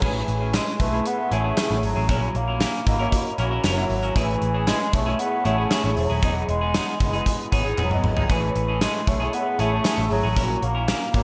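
A clear bass clarinet carries the melody in a classical solo style, its low line trailed by analog delay, in this moody, nostalgic 1980s-style pop excerpt. A gated 80s drum kit sits up front beneath it, with a tight kick, medium-tuned snare, bright cymbals, hi-hat, tambourine and toms ringing in an airy stone room, and it breaks into a fill at 7.8 s. A dark, foam-muted electric bass gives a round, amped low end, while a polished grand piano with ensemble chorus plays present accompaniment through chords moving between Amaj7, F#7 and Emaj7. A semi-hollow electric guitar picks a clean, scooped riff under subtle chorus and analog delay, and a very quiet, crisp group handclap joins at 0.5 s. Lush hall reverb soaks the mix in a dreamy haze over a straight 4/4 feel.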